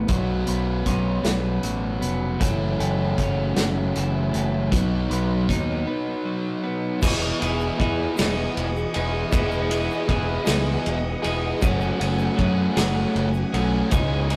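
Upbeat and carefree, this indie rock excerpt sways in a straight 6/8 at 52 BPM in E major, with a biting overdriven guitar and a twangy, clean twelve-string electric guitar playing riffs over a growling, overdriven fingered bass and a loose, roomy drum kit with a punchy kick. After a break from 5.9 to 7.0 seconds, the chords move to Emaj7 and F#madd9 as a vintage, warbling string machine of violas with ensemble chorus enters behind with slow-attack sustained chords, joined by a very quiet, grainy egg shaker. The rough rehearsal-room sound carries light reverb and warm saturation, and the piece is cut from a longer whole.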